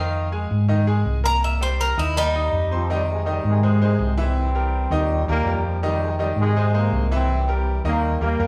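A large studio reverb gives this short Latin cut a wet, spacious sound, as if the band were playing live together in one room. At 164 BPM in a straight 4/4 and F minor, the mood is danceable and passionate, with the harmony cycling through Fm7, Ab, C7 and Eb. A picked Cuban tres carries the melody up front for the first 2.9 seconds, its doubled strings ringing metallic and bright, with some octave doubling. A trombone section takes over the melody from 2.7 seconds, sounding bright and poppy as an ensemble, with a light vibrato. Underneath, a brilliant, natural grand piano accompanies throughout, while a hollow-body short-scale electric bass, fingered and amped, sits forward with a dark, round tone.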